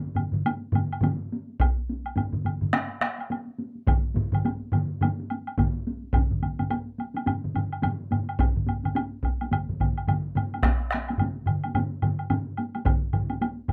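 This is Japanese traditional taiko drum ensemble music, driving and ceremonial, set in 4/4 at 106 BPM with a swung sixteenth-note feel, and it gathers speed throughout this fragment cut from a longer piece. Two taiko ensemble parts struck with heavy sticks open the passage: one sits in a small room and the other in a livelier space. A solo taiko part, also heard in a live room, sounds from the start, joined by a close, woody woodblock. At 1.6 s a second solo taiko part enters, played with hard sticks and placed up front in a small room, and it stands as the most prominent voice. A new section begins at 6.1 s, all within a snug booth ambience captured by close, detailed microphones.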